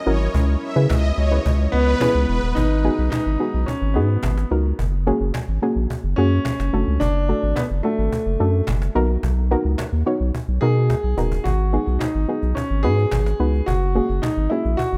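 A shimmering, ethereal pad opens this euphoric, carefree dance-pop excerpt, very quiet and held on sustained chords under a lush, detuned supersaw line with phaser and delay, both gone by about 2.5 seconds. Almost at once a soft, round pluck with chorus sets up the accompaniment, while a deep sine sub bass sits up front and a snappy, compressed cajon with snares keeps a straight 4/4 pulse at 108 BPM. From 1.7 seconds a concert grand piano carries the melody, intimate and polished with audible action noise, long sustain and a touch of delay. The harmony moves from C#m7 through G#m7, F#add9, D/F# and Bmaj7 before returning to G#m7 and F#add9, with a cajon fill just before the return at 10.9 seconds. Light reverb and studio ambience give it the rough feel of a home demo, and the clip ends as if cut from a longer piece.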